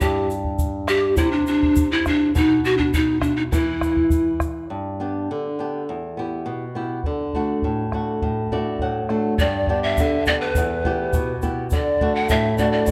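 A breathy, mellow bamboo pan flute with a soft chiff, vibrato and an unsteady quality carries the melody up front in this earthy, wistful Andean folk piece at 102 BPM in 2/4. It is accompanied throughout by a warm, fingerpicked flamenco guitar, a round, dry bombo close at hand, and a grainy, bright tube shaker in the background. The flute drops out as the guitar moves through G, Em and D, the bombo returns at 7.0 seconds, a nylon-string guitar fill arrives at 8.2 seconds, and the flute and shaker come back at 9.4 seconds, all set in a dark production with a recital-hall reverb.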